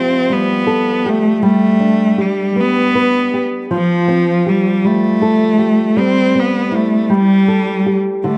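Swaying in six-eight, this tender pop ballad fragment sets a clear, focused bowed cello melody, close and up front with vibrato and a slapback echo, over a boxy, thumb-plucked acoustic flamenco guitar accompaniment, both sounding throughout within a moderate plate reverb and a dark production as the harmony moves from Fadd9 through G and C/G to a closing Gsus2.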